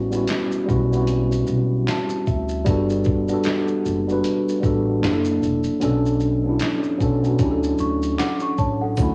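Lo-fi hip hop at 76 BPM in D major, this short, nostalgic and mellow fragment is cut from a longer piece and carries a swung sixteenth-note feel. A mellow tine electric piano carries the accompaniment up front, its clean tone colored by cassette tape and plate reverb, and it plays a fill between 1.5 and 2.7 seconds as the chords move from A13 through Gmaj9, F#7alt and Bm9 to Dmaj7. Beneath it, a woody, dark pizzicato upright bass holds the low end, while a compressed, pitched-down sampler-style drum kit with a thumpy kick, medium-tuned snare, hi-hat, handclaps and shaker sits muffled through cassette tape. At 7.8 seconds a bell-like, delicate celesta enters as a second line, its sweet, soft tone trailed by tape echo and plate reverb. A grainy tube shaker appears only in the background at the very end, and the whole fragment has the small-room intimacy of a home cassette recording.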